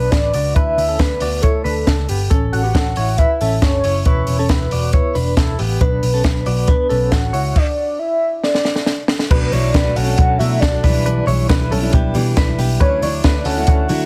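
A straight 4/4 pulse at 137 BPM drives this breezy, youthful stretch of jangly indie pop, cut from a longer piece. A compact cocktail drum kit sits up front with a punchy kick, a high-tuned snare and a dark, rolled-off top, while a foam-muted vintage electric bass supplies a round, amped low end. A velvety synth lead carries the melody, blending sawtooth, square and triangle waves in unison with a sub octave, treated with chorus, tremolo and plate reverb. Beneath it, a clean electric guitar recorded direct plays bright, twangy arpeggios colored by tremolo and digital delay. The chords move through Bm, Dsus2, A and Em before a brief break from harmony, and a drum fill at 8.4 seconds leads into a new section at 9.3 seconds, where a full-bodied jumbo steel-string acoustic guitar joins with picked accompaniment over Bm7, G6/B and Dadd9. Light reverb and a heavily compressed, radio-like sound frame the mix.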